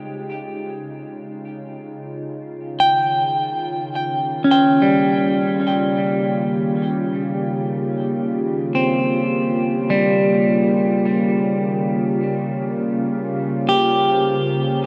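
A clean, up-front electric guitar picks tape-echoed arpeggios over a glassy, chorused FM pad and a tense, string-like drone on Db, both fading in across this serene, weightless free-time ambient excerpt, its chords moving from Db to Eb7 at 2.6 seconds and Bbm/Db at 11.9 seconds inside a huge, drenching reverb.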